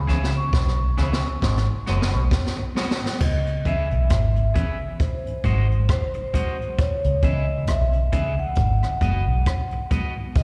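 A round, punchy, foam-muted electric bass sits up front in this slow, serious and meditative roots reggae excerpt at 67 BPM in C# minor, swung on the sixteenths. A brush-played jazz drum kit follows close behind, with a boomy kick, a high-tuned snare, rim clicks, hi-hat and dark crash cymbals in a small, mid-forward room sound with a rolled-off top, opening on a drum fill that runs to 3.2 seconds. Above them, a vibraphone struck with soft mallets carries the melody, its metallic, ringing tone colored by slow motor vibrato and trailed by tape and slapback echo. A slightly broken-up, twangy picked electric guitar with spring reverb fills in the accompaniment, and a soft, flute-like tonewheel organ with key click, chorus vibrato and slow rotary speaker sits in the background, while a stringy, bright auto-wah clav plays a riff only until 2.2 seconds. The harmony moves slowly between C#m7, G#m7 and G#7, and the whole piece carries the light reverb of a live gig heard through a venue's PA in a recital hall.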